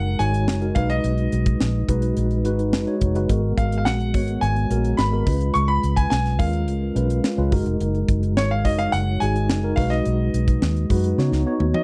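A dry, close studio sound frames this brief, urban, nocturnal slice of polished 1980s jazz-funk pop, where a clear grand piano with short sustain and slapback echo carries the melody over a mellow tine electric piano with analog chorus, a dark, round, foam-muted fingered bass and a crisp fusion kit with punchy kick and high-tuned snare, which enters at 0.2 seconds and closes with a drum fill at 11.2 seconds as the chords move from F#6/9 through B6, G#m9 and C#7 to a suspended C#9.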